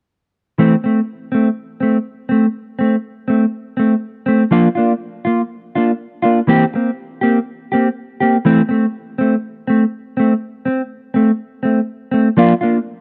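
A mellow, dark electric guitar plays alone and up front from 0.6 to 12.8 seconds, its clean, fingered tone touched by a subtle chorus. This danceable, sunny highlife fragment carries a light swing on the sixteenths, moving through Am/E, Bb and C7(no3) before returning to Am/E at 8.5 seconds for a second passage. The sound is dry and close, in the manner of a 1970s studio recording, and the clip is cut from a longer piece.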